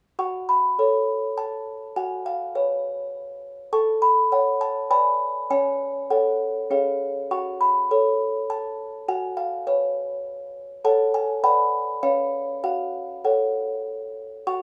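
A light reverb surrounds a lone music box that sits up front, its tinkling, delicate tone slightly out of tune, with the character of a small box. This is a classical lullaby written for music box, wistful and fragile in mood, moving in a gentle 3/4 at 101 BPM with a straight feel. The key is F# minor, and the melody ranges from C#4 up to C#6 with a soft, airy, mellow touch. The harmony settles on F#m and leans toward C#7 and a G#dim/B passing chord before coming home to F#m at 12.6 seconds. Cut from a longer piece, the passage plays as a single section running from 0.2 to 14.5 seconds.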